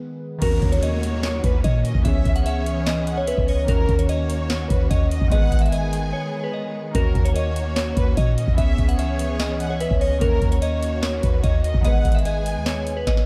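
Dark, melancholic trap hip hop in a half-time feel, opening on glassy digital keys with a filter sweep before a crystalline, warbling FM bell melody with chorus and phaser joins at 0.4 seconds alongside an expressive, close violin section carrying a delayed second line, lush bowed symphonic strings holding sustained chords, a deep, boomy 808-style bass, a background downlifter, and a booming analog drum machine up front with a deep kick, crisp snare, handclaps and metallic hats, all set in dark digital ambience with a brief break at 6.1 seconds and a drum fill at 13.1 seconds.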